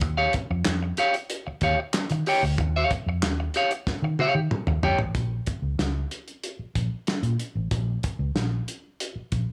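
A light reverb wraps this short, funky, cool funk cut at 94 BPM in Bb dorian, where a bright, twangy electric guitar on the edge of break-up, treated with plate reverb, plays accompaniment over an Eb9 chord until 5.0 seconds. Up front beneath it, a vintage muted fingered bass sounds dark and round, and a cloth-damped, thuddy drum kit with a fat snare, tight kick, hi-hat, toms and handclaps keeps a straight 4/4. A drum fill from 3.9 seconds leads into a second section on Bbm at 5.1 seconds, carried by bass and drums alone.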